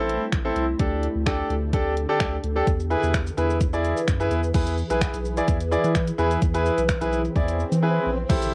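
A straight 4/4 dance-pop pulse at 128 BPM drives this confident, bittersweet excerpt cut from a longer piece, where a brilliant, up-front concert grand piano plays accompaniment over Am, Dsus4 and E, a round analog bass with a fast attack pumps with the sidechain beneath a knocking, overdriven pop drum kit of kick, hi-hat, shaker, finger snaps and crash, an ethereal, detuned pad with ensemble chorus sustains chords in the background, and an electronic swell from 7.3 seconds falls into a brief silent gap before an impact lands at 8.3 seconds, all carrying the hazy character of a cassette home recording in a small room.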